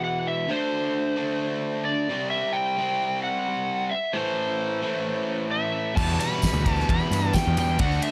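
Gritty and brooding, this classic rock excerpt moves at 131 BPM in a straight 4/4 in E minor, cut from a longer piece. From the start, a slide guitar played with fingerpicks carries the melody in a bright, overdriven voice. Beside it, a raw garage guitar sits up front with a picked riff as the chords move through D5, C5 and Am before landing on Em. At 6.0 seconds the band arrives. A crunchy guitar adds a second riff from the background with a warm tone, a fuzz-laden picked bass punches up front, and a damped 70s drum kit brings a fat snare, tight kick, crash and ride with a dry, acoustic sound, while a jingly tambourine tucks in behind them. The passage sits in a small room ambience and runs to 8.1 seconds.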